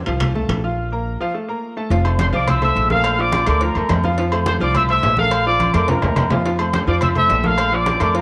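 Latin salsa at a brisk 212 BPM in F major, joyful and made for dancing, this passage opens on a brilliant, slightly detuned upright piano with audible action noise, over a woody, growly pizzicato upright bass up front, ringing congas, metal-shell timbales and agogo bells, and tight, high-tuned bongos and cowbell in the background. After an early break, a punchy, vintage trumpet section with light vibrato takes the melody at 2.2 seconds, while the harmony alternates between Fmaj7 and Bbmaj7 and a drum fill arrives from 5.6 to 6.5 seconds. Light reverb and studio ambience round out the recording.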